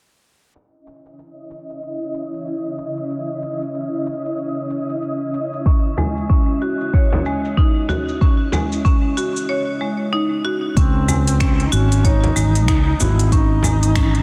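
A mystical, hypnotic organic downtempo fragment opens at 0.6 s with an organic electronic drum kit of cabasa, finger snaps and crisp hats under a filter sweep, soon joined by a blurred, detuned granular cloud pad with sidechain pumping; a woody hard-mallet marimba with delay arrives at 5.7 s alongside a deep, up-front electronic kick, followed at 6.0 s by a saturated frame drum, and after a brief break a distant duduk with vibrato and scooped notes carries the melody from 10.8 s over a growly fretless electric bass, all within a dense, heavily limited master.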